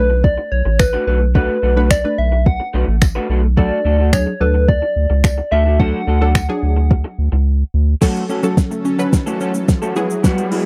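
Dry and close, with the feel of a 1970s studio, this cut from a longer dance-pop piece moves at 108 BPM in B dorian with a driving, confident mood. An overdriven electronic R&B kit sits up front with a soft kick, fat snare, metallic hats, finger snaps, shaker and crash. Beneath it, a deep, nasal analog bass pumps against the sidechain, and a punchy, detuned sawtooth chord stab pulses with chorus and the same pumping. A gentle, keys-like FM lead carries the melody with warbling chorus, tremolo and slapback echo. An electric guitar through a small old amp adds a slightly broken-up, lo-fi riff, and a jingly tambourine sits in the background. After a silent gap that ends at 8.0 seconds, a build-up begins with a drum fill, a smooth supersaw holding chords and a very quiet, woody synth pluck tracing arpeggios, as the harmony moves from Bm7 and D to F#m and then Eadd9, while a riser joins at 8.9 seconds.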